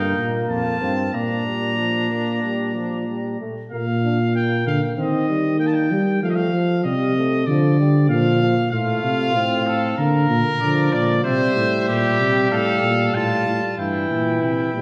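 A spacious, reverberant hall sound frames this solemn, contemplative classical brass canzona in Bb major at 95 BPM, where a bright, distant trumpet carries the melody over a warm, soft-attacked trombone and an up-front, smooth-topped tuba bass, while a clear, punchy second trumpet sounds from 0.0 to 3.4 seconds and returns at 8.7 seconds, the imitative lines moving through harmony from F and Bb to Eb and C before closing on a diminished chord at 13.8 seconds in this brief excerpt.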